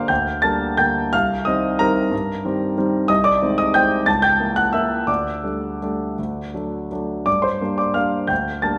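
Nostalgic and bittersweet, this brief excerpt from a classical piano waltz in G minor moves in a rubato 3/4 at roughly 159-194 BPM, with a solo concert grand, intimate and up front with deep bass and audible action noise, spanning G1 to A6 in a moderate recital hall reverb as its harmony travels from Gm through Cm7, Ab/C, C#dim7, Dsus4 and D before settling back on Gm at 7.3 seconds.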